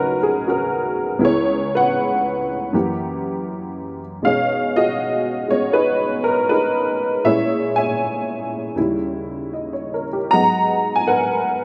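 Solo jazz in E-flat minor, moody and cool, moving at 79 BPM in 4/4 with a swung, rubato feel across this short 11.6-second fragment of a longer piece. A detuned, jangly honky-tonk upright piano carries everything alone, its woody, vintage tone sitting up front and spanning from Db2 to Bb5 as it drifts through rich harmonies from Ebm9 through Gb7b9 and B69 before settling on Abm9. The sound has a live, single-room intimacy with light reverb.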